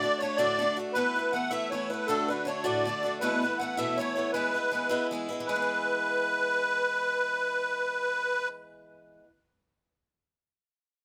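A musette accordion and a picked acoustic guitar start together, launching a cheerful Celtic folk jig in 6/8. The accordion carries the melody with a reedy, shimmering musette tone, sitting close and up front with a touch of plate reverb. Beneath it, the swing-style guitar gives a boxy, bright accompaniment with the crisp bite of fresh strings, ranging from low bass notes into the middle register. The harmony alternates between D and Esus4 before settling on E, and the tune moves into a new strain at 5.5 seconds. The accordion drops out at 8.5 seconds, leaving the guitar alone until 9.3 seconds in this fragment cut from a longer piece, all heard through close, detailed microphones in a small, moderately reverberant room.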